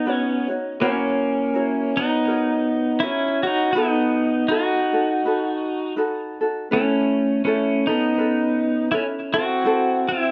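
An electric pedal steel guitar carries the melody up front, its clean, twangy tone shaped by fingerpicks, slide, compression, volume swells and a touch of digital delay. Behind it, a light acoustic ukulele is thumb-plucked in accompaniment for the full 10.3 seconds, moving through Badd9, F#7, B7 and Aadd9 before landing on Am6 at 9.7 seconds. This languid, relaxed Hawaiian passage, cut from a longer piece, has a swung feel and sits in a moderate studio reverb.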